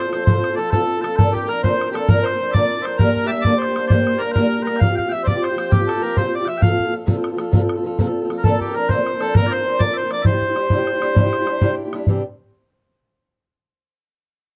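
Cheerful and lively, this Celtic folk slide in 12/8 at 132 BPM moves through C mixolydian, with a reedy, close-miked accordion carrying the melody through plate reverb, mellow small bagpipes playing a sweet second line in the background, a bright, boxy fingerpicked archtop guitar with audible finger squeak in accompaniment, and an open, boomy bodhran up front, set in a dark production with light reverb in this short cut from a longer piece.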